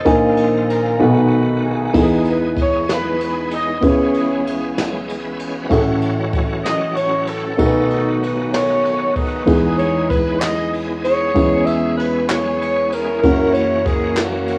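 A slow 6/8 gospel pulse at 64 BPM in E major carries this reverent, jubilant fragment, with a jazz brush kit of boomy kick and dark cymbals under a woody, mellow upright piano and a shouting tonewheel organ holding sustained chords through slow rotary speaker and chorus vibrato. Up front, a tight saxophone section sings the melody with light vibrato, soft attacks and a tape echo, moving from Emaj7 through C#m7 and A6 to B7 before ending on F#7. Crisp group handclaps join at 10.4 seconds, and the whole piece carries the character of a home cassette recording in a small room.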